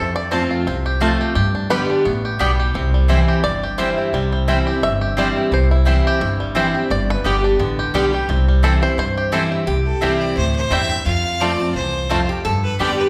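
Bluegrass with a lively, driving feel and a swung 4/4 pulse, heard as a short cut from a longer piece in the wet reverb of a recital hall or church. A twangy, percussive five-string banjo played with fingerpicks carries the melody as a solo for the first 9.7 seconds. Beneath it, a full-bodied dreadnought acoustic guitar picks the accompaniment up front, and a woody, thumpy upright bass with gut strings anchors the low end, also close in the mix. A round, double-strung mandolin adds stabs from just after the start. At 9.7 seconds a metallic, nasal lap resonator guitar enters with a slide second line, and a clear, earthy bowed fiddle joins just after with light vibrato, taking up the melody up front as the chords move from C through F to G.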